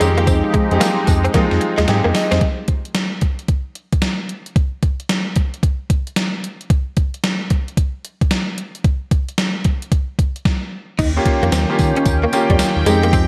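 Set in a light digital ambience, this punchy, confident new jack swing clip moves at 112 BPM in 4/4, with a sixteenth-note swing. A gated 80s drum machine sits up front from start to finish, its thumpy kick, gated-reverb snare, hi-hat, tambourine and crash given an overdriven, sampler-style edge and the feel of a small room. Over an Fm9 chord, a round, dark analog bass, a clear, polished concert grand piano, a bright, evolving pad with chorus and a clean, compressed electric guitar riff set back in the mix all sound together before dropping out at 2.4 seconds, leaving the drums alone. A drum fill and a piano fill lead into that break, and the drums carry the long middle stretch until a stop just before 11.0 seconds. The bass, pad and guitar then return on an Eb7, the detuned pad sweeping resonantly and the guitar's chorused tone shimmering in the background, with the piano rejoining a moment later at 11.2 seconds.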